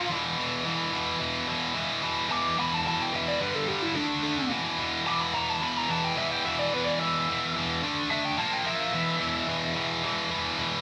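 A stone room's moderate reverb surrounds this short rock cut, taken from a longer piece and captured as a band playing live together. The mood is aggressive and heavy, set in a straight 4/4 feel. A double-tracked, high-gain rhythm guitar sits up front with a bright, distorted, picked riff that runs the full 10.8 seconds. Over it, a lead guitar through a small cranked amp plays a dark, overdriven, picked solo melody from the start, reaching between D4 and D6 before dropping out at 10.3 seconds. The riff guitar is the louder of the two, leaving the solo voice tucked slightly behind its crunch.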